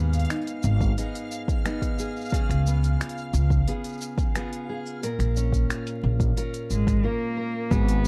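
This short, autumnal and wistful folktronica piece opens with a full-bodied fingerpicked acoustic guitar playing arpeggios through digital delay, a growly, woody pizzicato upright bass up front, and a bright, reversed granular texture swelling high above in its own reverb. An organic electronic kit of smooth overdriven hi-hat, shaker and finger snaps joins almost at once, followed by a deep overdriven electronic kick, and a rich, expressive bowed cello with vibrato, portamento and 12-bit sampler grit enters at 6.7 seconds, just before a brief break. A barely audible, nostalgic tape-like pad warbles in at 8.1 seconds, all set in light reverb and vinyl crackle within a dark, warm production.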